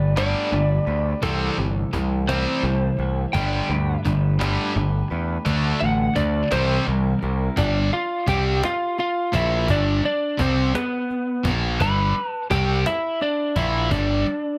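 In a slow, straight 6/8 at 57 BPM, this cathartic, restless quiet-loud alternative rock excerpt in G major opens with an up-front, slightly broken-up lead guitar soloing through tape echo until 7.6 seconds, then carrying the melody. Beneath it, a scooped, compressed distorted guitar riffs alongside a second tight, bright distorted guitar that drops out at 7.2 seconds, while a twangy electric guitar at the edge of break-up plays phaser-tinged arpeggios in the background until 7.6 seconds. A punchy, growling picked bass with overdrive sits up front, a woody cajon with faint snares ticks along in the background, and light reverb frames the chords moving from Gadd9 and C6 through D and C7 back to G.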